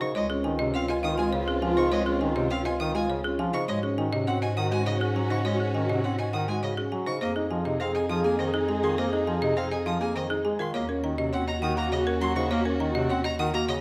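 A woody, hard-mallet folk marimba carries the melody in this urgent yet meditative minimalist classical pattern piece in Eb dorian at 102 BPM in 3/4, while a dark, mellow grand piano and a smooth, distant solo violin spin arpeggios, a warm bass clarinet plays accompaniment, a punchy, close-miked second bass clarinet holds the bass, an airy alto flute adds a second line from 0.2 s, and a soft-attack studio violin section sustains chords in the background, all through a moderate recital hall reverb as the harmony moves from Dbmaj7 through Ab7sus4 and Fm7 to Ebm7 in this cut from a longer work.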